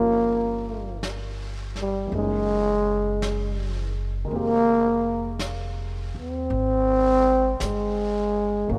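A growling, raspy trombone carries the melody up front with breathy, scooped notes over an intimate baby grand piano sitting in the background with audible action noise and a woody pizzicato upright bass, joined at 1.0 s by a brushed drum kit with a rolled-off top, in this romantic, late-night swung jazz ballad moving through Gm7b5, Gb13 and Fm11, bathed in lush hall reverb within a rough home-demo mix.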